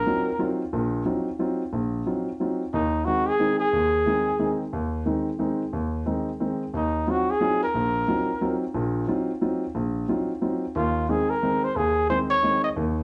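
A swinging jazz waltz in three with a cool, searching mood, this passage is cut from a longer piece and keeps to a single section. A mellow, smooth-topped trumpet carries the melody up front in short solo phrases beginning at 0.0, 2.7, 6.8 and 10.8 seconds, shading its notes with vibrato and scoops. An intimate baby grand piano, natural and close with its action noise audible, accompanies from 0.1 seconds to the end, and both sit in a small, wet-sounding room heard from a little further back.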